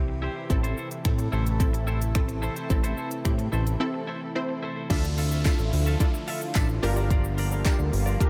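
A fat, detuned sawtooth analog bass sits up front from the opening, joined at 0.5 seconds by a deep house drum kit with a deep kick and smooth hats that drives this confident dance-pop excerpt at 109 BPM in D minor; the bass, punchy warbling chord stabs and a lush, phased unison pad all pump with sidechain alongside a bright, twangy twelve-string electric guitar riff, while a background downlifter enters at 4.9 seconds and a distant, jingly tambourine arrives at 5.5 seconds, set in light reverb.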